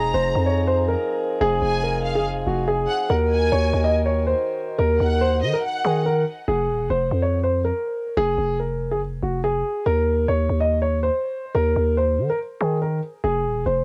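Ominous hip hop at 142 BPM with a half-time feel in F phrygian, this excerpt is led by a dark, intimate concert grand piano melody, low-pass filtered and tape-softened, with audible action noise. A growling, buzzy 808-style bass plays beneath it throughout. In the opening seconds, a bowed violin section adds an expressive second line with vibrato, portamento and tape echo until 6.0 s, while a distant, roomy French horn section holds mellow chords until 6.4 s, all set in light reverb with a home-cassette grain.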